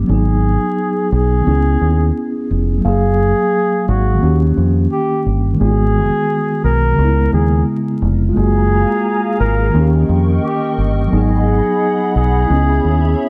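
Dreamy and cosy, this lo-fi hip hop passage, cut from a longer piece, drifts along at 87 BPM in 4/4 with a swung sixteenth-note feel in F# major, its chords circling through G#m7, C#m7, F#maj9 and D#7. A mellow tine electric piano sits up front as accompaniment, clean and heard as if through built-in speakers, its tone softened by cassette tape character and a low-pass filter. Beneath it, a deep dub fingered electric bass holds the low end, dark, round and direct. A distant, roomy flugelhorn carries the solo melody in a jazz style, with vibrato and scooped notes shaded by its own low-pass filter. At 8.5 seconds a hollow, flute-like pad enters with slow-attack sustained chords that warble with a vintage, detuned quality and ensemble chorus. The dark production is wrapped in moderate spring reverb and a bed of vinyl crackle.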